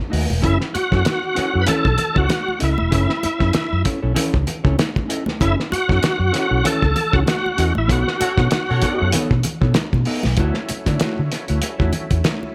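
A swung 16th-note funk groove at 96 BPM in 4/4 sets up a hypnotic, driving vamp on B9, with a muffled, cloth-damped drum kit up front, a round, foam-muted fingered bass, dark clean guitar accompaniment and high-tuned congas in the background beneath a bright, shouting tonewheel organ lead treated with overdrive, fast rotary speaker, chorus vibrato and slapback echo, joined at 8.2 seconds by a distant horn section in octave doubling as the band hits an accent, before a move to Dmaj9 at 10.4 seconds where a thick, gritty organ holds sustained chords through a slow rotary speaker in this short excerpt from a longer piece.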